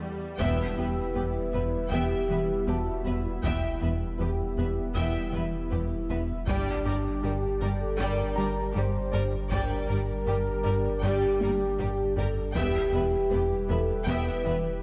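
Cut from a longer piece, this vast, relentless hybrid orchestral and electronic film cue in E minor at 79 BPM opens on a brassy, detuned analog pad with chorus, a lush viola section in the background, very quiet cellos and a felt-muted upright piano with audible action noise and tape echo. At 0.4 s a band accent brings in the violin sections, with an expressive vibrato melody over a smooth second line, along with a tight French horn section on sustained chords, a round analog bass riff, a clean, dark sine sub bass, distant double basses and very quiet taiko played with heavy sticks, as the harmony moves from Em to Gm at 6.5 s. A drum fill at 11.4 s leads back to Em, and the whole cue sits in a moderate scoring stage reverb.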